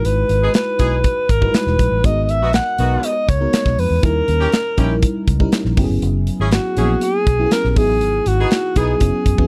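A smooth alto saxophone with vibrato carries the melody from the first beat of this bittersweet, nocturnal excerpt of polished 1980s jazz-funk pop at 120 BPM. It rides over a lush, dreamy FM electric piano with a soft pad and analog chorus, a dark, round, foam-muted fingered bass and a tight, acoustic drum kit, with the bass and drums up front. A distant, roomy horn section joins at 0.4 seconds as a second line, moving through Emaj9/G#, G#m9, D#7b9 and F#9sus4 in a dry, close 1970s-style studio sound.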